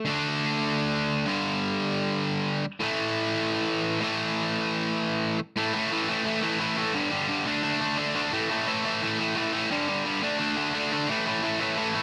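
A lone distorted electric guitar, bright and up front with a double-tracked, overdriven bite, drives this rebellious, upbeat punk excerpt at 174 BPM in a straight 4/4. Picked power chords on D5, G5 and A5 cycle through an opening section and shift into a new one at 5.6 seconds, spanning G2 to D4. Light reverb gives the room a touch of space around the raw, energetic attack.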